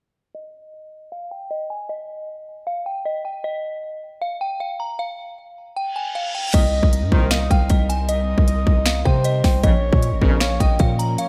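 An up-front trap drum kit of hard-clipped kick, sharp snare, crisp hats, finger snaps and crash lands at 6.5 s with a punchy, heavy 808-style bass in this eerie, melancholic half-time trap excerpt at 155 BPM in C phrygian, after a delicate, tinkling FM synth bell has carried the melody alone from 0.3 s under a filter sweep and an electronic reverse cymbal at 5.9 s, while a breathy, flute-like synth lead with chorus, tremolo and delay adds a second line, a dark, woody string section holds sustained chords in the background and a bright brass ensemble punctuates with stabs over Cm7 moving to Bbm, all set in a light reverb.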